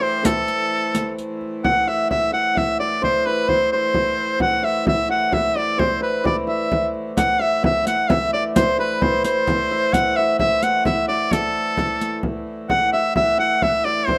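An edgy, up-front shawm carries a folk-style vibrato melody over a mellow, shimmering hammered dulcimer second line, a clear, smooth hurdy-gurdy drone and a deep, dry frame drum in this driving, ancient-feeling medieval dance in 6/8, with a riq's dark jingles appearing briefly from 0.2 seconds and again from 7.2 to 12.2 seconds, all heard in a rough home demo mix with moderate studio ambience in an excerpt cut from a longer piece.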